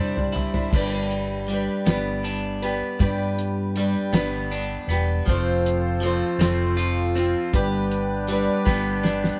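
A cloth-damped, thuddy drum kit with a fat snare sits up front in this hopeful folk and heartland rock fragment in 6/8, opening with a fill at 0.0 s and closing with another at 8.7 s, alongside a bright, boxy parlour acoustic guitar, a twangy electric guitar riff at the edge of break-up, a round hollow-body bass and a reedy accordion whose sustained chords enter at 5.3 s, the band captured live in one room with a wet studio reverb.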